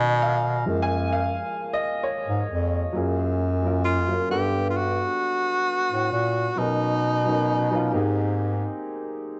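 Smooth and warm, this neo-soul R&B excerpt moves at an unhurried 66 BPM in 4/4, with a gentle sixteenth-note swing in F# major, tuned slightly low to A4 = 436 Hz. A woody upright piano with long, natural sustain carries the accompaniment throughout, while a breathy bass clarinet with jazz-style vibrato holds down the low end from the start. At 3.9 seconds a punchy tenor saxophone enters with the melody, pop-styled, with scooped notes and a breathy vibrato of its own. The harmony drifts through rich major-ninth chords, Bmaj9, F#maj9, Gmaj9 and G#maj9, giving the passage a lush, floating colour. All three instruments sit up front in a soft, light reverb with a gently rolled-off top end, and the clip breaks off at 9.4 seconds as part of a longer piece.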